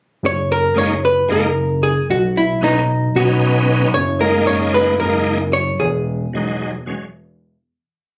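Progressive instrumental band music in a straight-feeling 7/8, intricate and bright, where a dark, clean hollow-body archtop guitar carries a motif-based melody of arching phrases over a fat, saturated analog bass holding simple root-and-fifth lines and a shouting tonewheel organ comping in rootless voicings with light overdrive, chorus vibrato and fast rotary speaker, all caught on a phone in the room with light club reverb through chords of F#6, Badd9 and Emaj7 before fading out from 5.8 seconds.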